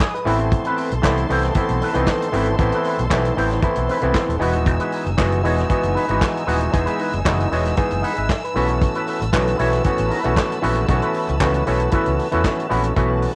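Disco at 116 BPM, glamorous and joyful, cut from a longer piece and captured as a home cassette recording with light reverb and small-room ambience. An up-front, overdriven auto-wah clav with a stringy, percussive bite plays accompaniment and adds a fill from 3.6 to 4.7 seconds, beside a twangy, clean envelope-filtered electric guitar in lush chorus and a rich bowed string section holding smooth, vibrato-laden chords. A warm soul drum kit with a punchy kick, medium-tuned snare, hi-hat and handclaps drives the groove, joined at 0.3 seconds by a bright, overdriven fingered electric bass, all moving through Amadd9, Emaj7 and B7sus4.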